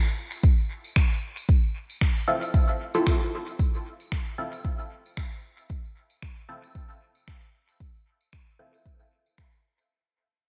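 This dub techno excerpt moves at 114 BPM in 4/4 with a light 55% swing on the sixteenths, tuned to A4 = 438 Hz. Its nocturnal mood rests on a single Cadd11 chord. A jingly, close and dry acoustic tambourine opens at 0.1 s, and a layered electronic kick drum sits up front from 0.4 s. Electronic finger snaps arrive at 1.0 s, dressed in gated reverb and dub echo. From 2.3 s to 8.7 s a muted, evolving chord stab, built from detuned sawtooth and square waves with a sub octave, spans C4 to A4. It has a fast-attack filter pluck and short decay, and runs through phaser, sidechain pumping and dub echo. The bright, 1980s-style digital production carries light reverb, and the whole passage fades out across its full length.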